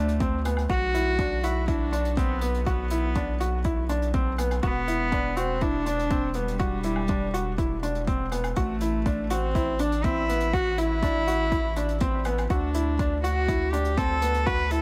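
A close, reedy cello carries the melody in this cinematic, melancholic piece of piano and strings electronica, its bowed gut-string tone nasal and period in style, with a digital delay trailing each phrase. Beneath it, a felt-muted upright piano repeats a soft, intimate riff with short sustain and audible action noise, also touched by digital delay. A round analog bass sits up front with a deep, mellow square-and-sine tone, a fast filter pluck and sidechain pumping, alongside an overdriven electronic kick that sounds layered and deep, as if re-recorded in a large room. Quieter hi-hat and woodblock played with brushes add an acoustic, small-room texture from 0.1 seconds. At a straight 122 BPM in 4/4 and A dorian, the harmony moves from D5 through Bm, Em7 and A5 to Dsus2. The dry sound carries a faint mains hum, and the passage is cut from a longer piece.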